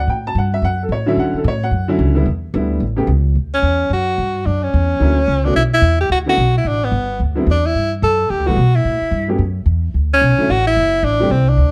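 A dark, warm production with a light touch of reverb frames this short, sophisticated stretch of small-group swing and bop in a brisk, swinging 4/4. An upfront upright piano with a boxy, short-sustain tone comps through chords such as Dmaj9, Em7 and A9, while a pizzicato upright bass on steel strings gives a woody, warm foundation in the low register. At 3.5 seconds a breathy tenor saxophone enters as the soloist, clear and upfront, with vibrato, scooped notes and a plate reverb sheen on its jazz phrasing. Under the horn the harmony moves through richer colours like F#7b13, Bmadd11 and Gmaj13 before settling back to Dmaj9 and an Am7. The piano drops out at 11.3 seconds, leaving bass and saxophone to close the fragment.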